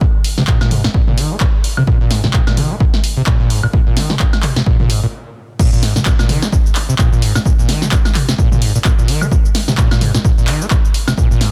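Raw and gritty, this 129 BPM acid house excerpt with a 16th-note swing sets a squelchy, resonant sawtooth acid bass riff, colored by overdrive, subtle chorus, cassette tape and a filter sweep, against a punchy, tape-warm electronic kick placed up front and an analog drum machine of punchy snare, handclaps, hi-hat, shaker, toms, woodblock and crash cymbal, its snare, clap and hats carrying a short small-room ambience, in a dry, dense, heavily limited master that stops at 5.1 seconds before the drop hits at 5.6 seconds.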